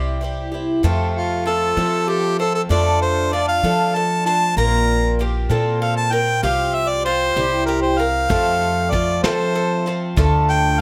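Acoustic folk in a straight 6/8 at 64 BPM in F major, this hopeful, nostalgic excerpt opens with a bright, shimmering, octave-doubled picked twelve-string guitar and a woody, growly pizzicato upright bass placed up front, with a picked bowl-back mandolin adding double-string arpeggios from 0.8 seconds. An up-front harmonica carries a classical-style solo melody from 1.2 seconds over chords moving from F through Dm/F, Bbsus2 and Csus4 back to F. A vintage brush drum kit with a punchy kick and rolled-off top slips in at 8.3 seconds, all set in light reverb.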